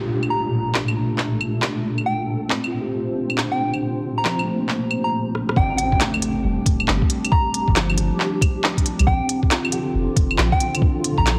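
Nocturnal and melancholic, this future garage excerpt in G minor moves at 137 BPM with a swung 4/4 feel, built on a worn, slightly out-of-tune electric piano with 12-bit sampler grit and a cloudy, evolving granular pad, both pumping against the sidechain, while a gentle FM synth lead with chorus and vibrato carries the melody over up-front handclaps, claves, rim clicks and smooth hi-hats. A grainy, flickering texture sits in the background until 5.1 seconds as a filter sweeps the ambient pad, and a drum fill at 5.3 seconds leads into an electronic impact at 5.6 seconds. There a round sine sub bass and a muffled, thumpy, pitched-down kick arrive, all framed by lush hall reverb and a heavily compressed, radio-like finish.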